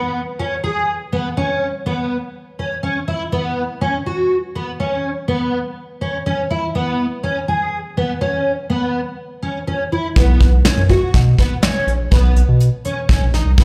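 Progressive instrumental in 7/4 at 123 BPM, driving and intricate, this excerpt from a live club gig opens with a dark, shimmering fingerpicked twelve-string acoustic guitar playing octave-doubled arpeggios through ensemble chorus and slapback echo over chords moving from C#7(no3) through F#sus4 and G#sus4, before a round, deep analog bass and a soft brush drum kit with a tight kick enter at 10.2 seconds on Bmaj7sus2, all heard through the venue's PA with light small-room reverb.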